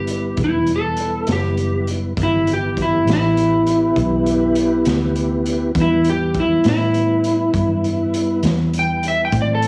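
Slow blues in a mournful, smoky 12/8, this short cut from a longer piece rests on a single E minor chord throughout its 9.7 seconds. An electric slide guitar, played with fingerpicks, carries the solo melody up front, its warm, slightly broken-up tone run through cassette tape. Beneath it, a mellow tonewheel organ holds soft, flute-like sustained chords, colored by chorus vibrato and a slow rotary speaker. A vintage muted fingered electric bass adds a dark, round, foam-muted low end, while a raw garage drum kit enters at 0.1 seconds with hi-hat, punchy kick and a medium-tuned snare, sounding saturated and gritty in a small, pumping room with a rolled-off top. The home cassette recording is finished with a light studio reverb.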